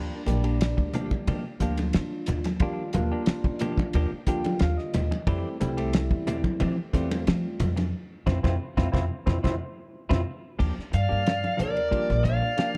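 Funky and bright, this excerpt of electric jazz fusion moves at 90 BPM in Eb major, with a barky tine electric piano swirling through phaser and clean, compressed electric guitar stabs with slapback echo riding over a woody pizzicato upright bass, a damped 70s drum kit with a fat snare and tight kick, and hard-hand congas. The electric piano steps forward with a fill at 3.9 seconds, the chords shift from Ebmaj9 to Fmaj9, and a band accent arrives, capped by a drum fill near its close, before the harmony returns to Ebmaj9. At 10.9 seconds a bluesy, distorted lead guitar takes the melody up front, joined by a hollow, vibrato-tinged concert flute on a second line, all set in a dark production with light small-room reverb.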